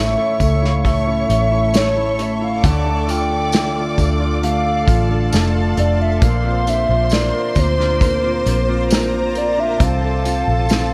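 A hollow, woody synth lead carries the melody from the first moment, treated with chorus and phaser and touched with vibrato, while a lush studio violin section with tape echo sings a second line. Beneath them, a felt-muted upright piano plays soft, intimate accompaniment with its action noise audible, a fingerpicked steel-string acoustic guitar adds full-bodied arpeggios with tape echo in the background, and a dark, round, foam-muted electric bass sits up front. A shimmering, ethereal pad with an octave-up sheen and built-in reverb enters at 0.1 seconds, and at 0.4 seconds an acoustic drum kit played with bundle sticks joins with a punchy kick, medium-tuned snare and hi-hat, alongside a jingly tambourine in the background. This emotional, heartfelt pop ballad moves at a slow 67 BPM in a straight 4/4, with the harmony passing from A to Dm at 2.6 seconds and to Bbadd9 at 6.2 seconds. The whole recording carries the worn, warbling pitch drift of old cassette tape over light reverb and small-room ambience, colouring this section, cut from a longer piece.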